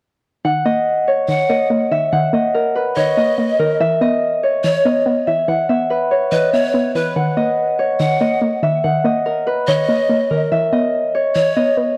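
A half-time hip hop groove in 4/4 drives this dark, ominous cut from a longer piece. Up front, a mellow, fingerpicked Celtic harp rings out the melody over a warbling, detuned sawtooth pluck with a dusty noise layer, filter sweep and chorus. From 1.3 seconds, a breathy bamboo pan flute with vibrato, chiff and analog delay adds a second line, all within a lightly reverberant small room, with gritty cassette-tape and transformer saturation colouring the sound as the chords move between Ebm and E5.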